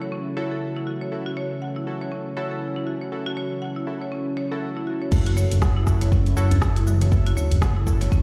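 Heard through a big sound system in a bare stone room, this driving, hypnotic afro house excerpt at 120 BPM in F# minor opens on a slow-blooming detuned sawtooth pad, woody hard-mallet marimba arpeggios with dub echo and round, chorused analog key stabs, all pumping on an F#m7 chord, until the drop at 5.1 s brings in a mellow sawtooth-and-square synth bass, a deep up-front electronic kick, a dark-hatted deep house kit with crash, rim click, shaker and toms, very quiet close congas and a deep djembe set back in the room.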